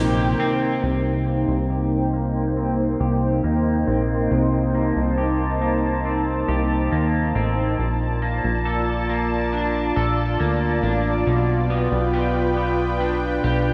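A thick, detuned unison pad, twangy guitar arpeggios and a punchy analog bass open this melancholic, haunting dream pop excerpt together, all three playing up front and continuing to the end of the cut. The tempo is an unhurried 69 BPM in a straight 4/4, in C dorian. The slow-attack pad sustains long chords with chorus and a low-pass filter. The slightly broken-up, picked electric guitar arpeggiates through analog chorus, a low-pass filter and analog delay. The funky bass has a fast-attack, decaying filter pluck built from sawtooth and square waves. The harmony moves from Cm7 to Bbmaj7 at 7.8 seconds and G7/B at 11.3 seconds, while a filter sweep runs from 0.8 seconds onward, and a lush hall reverb soaks the whole dreamy mix.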